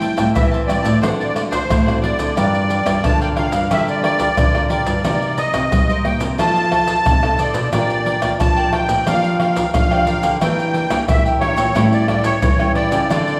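A reedy, shimmering musette accordion carries the bittersweet, nostalgic melody up front in this 90 BPM samba-and-choro excerpt, over crisp picked cavaquinho and fingerpicked nylon-string guitar set in the background, a second fingerpicked nylon-string guitar playing the bass line, and vintage, band-limited pandeiro, maracas, tight surdo and tamborim played with soft hands up front, all heard in the lush reverb of a recital hall.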